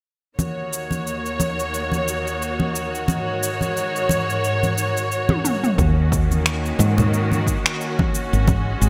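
A relaxed 89 BPM groove in 4/4 with a swung sixteenth feel opens this sunset chillout excerpt in Eb minor, where an overdriven deep house kit of cabasa, finger snaps and toms sits beside close, dry congas under rich, biting symphonic strings holding sustained chords up front, moving from Ebm7 to Ab7sus4. After a drum fill ending at 5.8 seconds, a growly, round fretless bass and a punchy, overdriven electronic kick join, with the dark bass sitting up front. A lush hall reverb and bright 1980s-style digital sheen give the whole a glossy, spacious finish.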